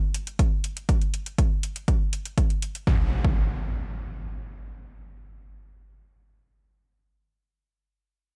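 A digital ambience frames this brief progressive house cut, driving yet dreamy in a straight 4/4 feel. Metallic, overdriven electronic hi-hats start at once in a small room reverb, joined at 0.4 seconds by a punchy, up-front electronic kick with its own grit and short reverb, both drums layered and firmly electronic. At 2.9 seconds a forward impact sound effect enters, overlapping the kick until the kick drops out at 3.4 seconds, and the impact carries on until 6.6 seconds.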